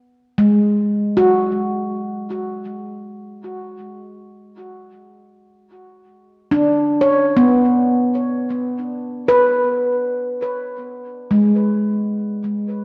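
A solo handpan of nitrided steel enters at 0.4 s, ringing and mellow under soft fingertips, mid-forward and up front with delay, wandering between G#3 and C#5 in free time over a rootless E chord in E mixolydian, tuned to A4 = 442 Hz, in a warm, luminous, meditative ambient excerpt bathed in a wet concert-hall reverb of 2.1 seconds and colored by the worn, warbling pitch drift of old cassette tape.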